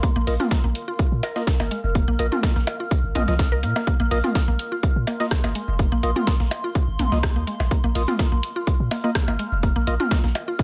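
A dry, close-sounding minimal techno excerpt at 125 BPM with a clinical, cool mood sits on a Bbsus4 chord, driven by an up-front electronic kick, a deep sub bass with a pitch-drop attack and tube saturation, a woody mallet-like synth pluck riff with 12-bit sampler grit and tape echo, a hollow, nasal organ stab through digital delay, a lo-fi, warbling pad with built-in reverb, a gritty breakbeat sampler-style kit with a high-tuned snare, a house kit of hi-hat and rim click, and electronic toms and percussion blips, with sidechain pumping on the pluck, pad and bass.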